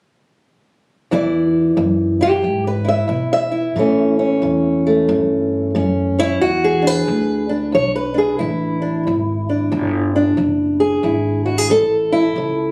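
Soulful and swaggering, this short acoustic country blues fragment, cut from a longer piece, moves with a loose swing in four. A fingerpicked old ladder-braced guitar carries the melody up front, its woody tone made dark and boxy by old strings, ranging from low bass notes up into its high register. Beneath it, a pizzicato upright bass with gut strings adds a thumpy foundation, sitting lower in the balance. Both instruments play together from 1.1 seconds to 12.7 seconds, moving through E7, A7 and back to E7 before landing on A at 11.7 seconds. Captured on a phone in the room, the sound has a homespun quality, softened by a light touch of studio reverb.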